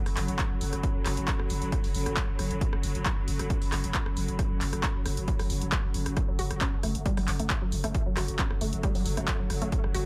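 A growling, buzzy 808-style bass anchors this excerpt of driving peak-time techno, holding a low F# under overdrive and a low-pass filter while sidechain pumping makes it breathe against the beat. At 135 BPM in a straight 4/4 and F# minor, the mood is hypnotic and relentless, resting on a single F#m chord throughout. A tape-tinged analog drum machine plays handclaps, hi-hat and rim click from the opening moments, with pumping on the hats, and a layered, punchy electronic kick drum joins it at 0.4 seconds, both carrying the character of a small room. Beneath them, a swarming, tense drone evolves with a granular, detuned quality, phaser and its own reverb, while a nostalgic, lo-fi pad warbles darkly through chorus and ring modulation. At 6.3 seconds a juicy, squelchy blip pluck arrives with a resonant filter snap, subtle chorus and delay, adding a riff over the mix's light digital ambience.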